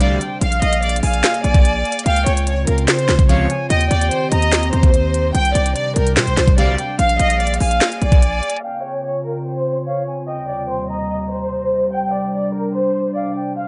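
Melancholic and eerie, this half-time trap cut from a longer piece sets a lush, bowed studio violin section up front with vibrato and tape echo, carrying the melody throughout. Above it, a reedy, airy concert flute with a crisp attack and rolled-off highs plays a second line, also through tape echo. Underneath, a warbling, lo-fi pad holds dark, nostalgic chords with a slow attack, chorus and its own reverb, while a juicy, resonant polysynth with a filter sweep lands brief stabs at 0.0, 3.3 and 6.6 seconds. An electronic trap kit with knocking kick, sharp snare, crisp hi-hats and handclaps drives the first section alongside a punchy, heavy 808-style bass with a noise layer, both up front. The kit drops out at 8.6 seconds as the second section begins, leaving the strings, flute and pad to move through the chords of Bb7, Dbmaj7, Eb6 and Csus2 under a light reverb and a gently muffled top end.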